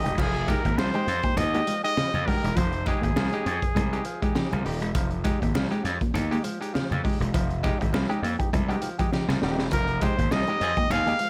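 Lightly reverberant and punchy, this sly, driving funk excerpt in F minor at 101 BPM with a swung 16th feel sets a clear, vibrato-laced jazz trumpet up front over a gritty overdriven slap bass, a crunchy breakbeat drum kit with a high-tuned snare and dark cymbals, stringy overdriven clav stabs, a twangy clean electric guitar riff, bright low-tuned congas, and a dark envelope-filtered electric guitar in the background, with a drum fill at 9.1 seconds and a tight vintage horn section slipping in briefly at 10.6 seconds.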